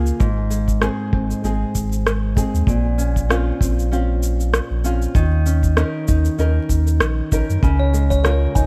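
Delicate and playful, this swung folktronica fragment pairs fingerpicked nylon-string guitar arpeggios, dark and up front with digital delay, against a round sine sub bass, a dry, tight kick, and a tape-warm electronic shaker and rim click, before a tinkling music box with 12-bit sampler grit and tape echo arrives at 7.8 s, all set in a small room within a dark, vinyl-crackled production.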